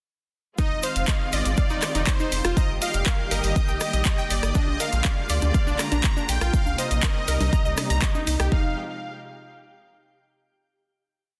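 Progressive house in a driving, emotional mood: a punchy four-on-the-floor electronic kick sits up front with a house kit of programmed handclaps, hi-hats and rim clicks, a grainy cabasa in sixteenths, and a round, nasal analog bass galloping in sixteenth notes under pumping sidechain. A smooth detuned supersaw carries hook phrases through digital delay over lush bowed studio strings holding sustained chords, while a bright, chorused analog pluck runs an evolving arpeggiated sequence. A very quiet twinkling granular shimmer arrives at 1.9 seconds, dry tribal congas join in the background at 4.7 seconds, and the dense, heavily limited drop resolves onto a final chord at 8.5 seconds.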